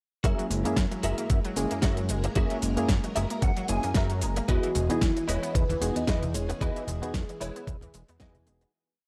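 An up-front, knocking electronic kick drives this sunny, feel-good nu-disco piece at 113 BPM in 4/4, holding a four-on-the-floor pulse beneath a layered pop kit of fat snare, crisp hats and shaker playing a disco backbeat with a light 16th-note swing. A thick, detuned analog bass with octave-jumping lines and filter sweeps pumps against the kick, while a reedy electric piano adds syncopated rootless chord stabs through spring reverb and tape echo. A lush string machine sits in the background with mellow sustained chords, and a punchy unison pluck runs an eight-step arpeggiated sequence, both breathing with sidechain pumping. A bright, compressed clean electric guitar, recorded direct, plays a funky close-voiced riff and takes a fill at 2.9 seconds, and from 4.5 seconds, as the harmony moves from F#9 to Emaj7, a round, dark octave-layered synth lead brings hook phrases with vibrato, chorus and phaser, joined by very quiet low-tuned congas. 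The whole piece is one drop in F# mixolydian with a gritty, cassette-tinged hardware sound and light reverb, fading out from 5.9 seconds.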